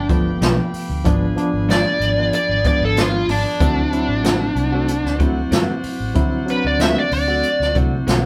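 Straight-eighth soul blues at 94 BPM in D mixolydian, this short, rollicking and gritty cut from a longer piece is carried by a lead guitar solo that runs throughout. The smooth, overdriven lead guitar sits up front, picked and warm, while a barky, reedy electric piano with tremolo plays accompaniment through its built-in speakers. A bright horn section holds sustained chords with light vibrato and octave doubling, and a vintage fingered bass, foam-muted, dark and round, anchors the low end. A direct-recorded clean electric guitar, compressed and tucked in the background, adds picked stabs from 0.1 seconds. The jazz brush drum kit, up front with a boomy kick and medium-tuned snare, joins at 0.1 seconds, and the harmony moves from G7 through G#dim7 to D7 at 3.6 seconds. The band plays live in one room with a moderate large studio reverb, giving the gritty groove a natural sense of space.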